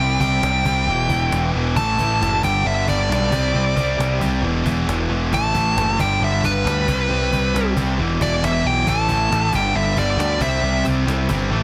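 A dense, heavily limited modern mix with light reverb and a digital ambience carries this menacing, driving hard rock excerpt in a straight 4/4. Up front, a nasal lead guitar with a parked wah and tape echo plays an overdriven solo melody until 10.8 seconds, over a punchy, fuzz-laden picked bass. Beneath them, a bright overdriven guitar and a sludgy distorted guitar pick out a riff over a progression that cycles through power chords along with Em, G and C, while a snappy cajon with snares sits in the background.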